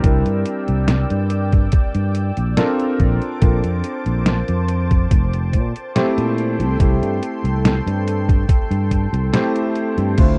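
A rough, dry home-demo sound frames this hazy, melancholic vaporwave excerpt at 71 BPM, where a thumpy, up-front electronic kick and a gritty, detuned 8-bit drum machine with crash, hi-hat and medium-tuned snare carry the beat, a growly, amped fretless bass sustains underneath, a vintage, clangy electric grand piano with analog chorus and delay plays accompaniment, and a lush, slow-attack detuned unison pad holds bright sustained chords over Dm9, Bbmaj9 and Am7/C, with the kick dropping out from 9.3 seconds.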